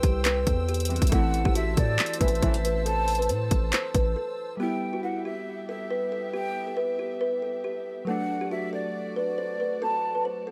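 A lightly reverberant, hard-hitting and brooding trap piece in E minor at 138 BPM with a half-time feel, led by a woody, close-miked kalimba melody over glassy digital keys with chorus and dark, softly bowed chamber strings. Up front, a hard-clipped, overdriven trap kit with bright hats and a deep sine 808 bass drive the opening until about 4.1 seconds. A breathy, distant jazz flute with digital delay carries a second line from 1.1 seconds, and a mellow brass ensemble adds a tight stab at 2.2 seconds; after a brief break, the kalimba, keys, strings and flute continue over chords moving from E minor to D.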